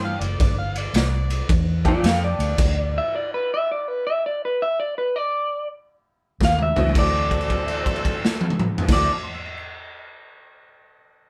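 This laid-back, rollicking electric blues shuffle in D mixolydian, cut from a longer piece, opens with an overdriven harmonica, a jangly tack piano and a round, foam-muted fingered electric bass, joined almost at once by a raw garage drum kit with a boomy kick and dark cymbals. At 110 BPM in a swung 4/4, the band sounds like it is playing live in one room with light reverb, the saturated drums pumping up front while the bass stays dark and amped. An electric guitar through a small old amp carries the melody from 1.9 seconds, its slightly broken-up, compressed, lo-fi tone sitting forward, and it keeps playing through a stop at 2.6 seconds. A drum fill at 6.4 seconds brings the band back over a C#m11 chord, and the harmonica returns on a D9 as a held note begins, its light vibrato, scooped notes and tongue slaps lending a jazzy edge. The metallic, percussive piano adds short-sustained, vintage accompaniment whenever the full band plays.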